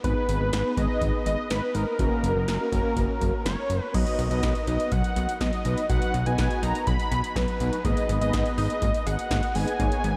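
A straight 4/4 electro drum-machine beat at 123 BPM, with deep kick, punchy snare and metallic hats, drives this bright, upbeat synth-pop excerpt in B major, where a fat, detuned sawtooth bass and dark, brassy chorused synth brass underpin a bold, thick unison lead with vibrato and tape echo, and a round analog pluck, its arpeggios sitting in the background, joins at 3.9 seconds as huge ambient reverb leaves the mix dreamy and soaked.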